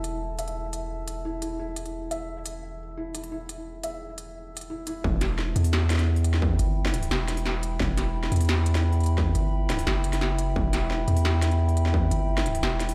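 Heard through a big sound system in a bare stone room with little reverb, this tense, cinematic piece of half-time drum and bass is cut from a longer track. A dark, detuned analog pad holds sustained chords throughout, its wave-folded square and sawtooth tones thickened by chorus and pumping under sidechain. A soft, felt-muted upright piano plays intimate arpeggios in the opening, close and up front, with audible action noise, vintage 12-bit sampler grit and tape echo, until it falls away at 5.1 seconds. Beneath it all, a long, deep 808-style sine bass sits up front with a fast attack and mellow decay, while an overdriven industrial kit supplies a clanging snare and crisp hats. At 5.0 seconds the drop arrives as a distorted, overdriven electronic kick pushes to the front, driving the half-time groove until it stops at 12.0 seconds.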